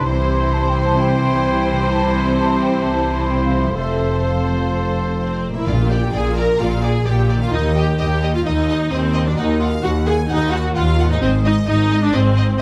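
Opening at once with a full cinematic orchestra at 129 BPM, this soaring, adventurous fragment sets a lush violin section melody over a second violin line, focused studio violas, smooth cellos and up-front double basses, while a ringing harp arpeggiates and a bright oboe, airy, hollow flute group, distant clarinet, dark French horn chords and mellow trumpet stabs color the opening until about 5.4 s, when the music turns to Bb mixolydian at 5.7 s with a brief hard-mallet timpani note and the strings carry on in a recital-hall ambience to 12.6 s.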